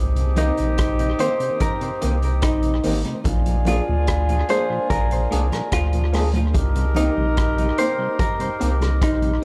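Roots reggae in C minor at a laid-back, meditative 73 BPM, this short cut from a longer piece rides a deep, round sub bass up front under a boomy-kicked vintage drum kit with hi-hat and rim click, while a dark, clean hollow-body jazz guitar carries the melody over a Cm7 to Bb7 progression. A punchy, tight horn section adds a second line soaked in dub echo, and in the background sit a mellow tonewheel organ with key click, chorus vibrato and slow rotary speaker, a slightly broken-up lo-fi electric guitar through a small old amp with lush chorus, and bright, high-tuned congas that drop out at 8.4 seconds. Moderate spring reverb and an echo-heavy mix give the whole piece a spacious, dubby haze.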